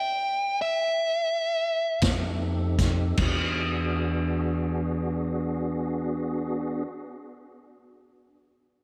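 An overdriven, biting lead guitar opens this gritty, soulful slow blues fragment alone in free time in E mixolydian, picking a slowing solo line through slapback echo, until at 2.0 seconds a clicking tonewheel organ with slow rotary speaker and chorus vibrato holds clear chords over F9 and then E9, a woody, dark pizzicato upright bass settles low, and a punchy vintage drum kit with rolled-off top strikes crash, hi-hat, kick and snare until 3.4 seconds, all bathed in a lush hall reverb with a big arena sound.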